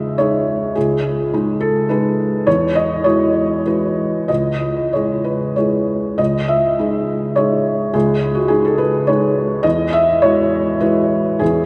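Intimate and reflective, this brief neoclassical minimalist piano piece drifts in C# minor with a rubato feel in 3/4, its pulse moving loosely between 92 and 107 BPM. A felt-muted upright piano plays alone throughout, spanning C#2 to E5 with a soft, mellow tone, sitting up front with audible action noise that brings the listener close to the instrument. The harmony circles through C#madd9, Eadd9 and C#m, then returns to C#madd9 at 6.2 s to begin a repeat of the opening phrase. A long, wet cathedral reverb surrounds the piano, giving the hushed instrument the resonance of a church or concert hall. Cut from a longer piece, the passage is tuned slightly high to A4 = 443 Hz.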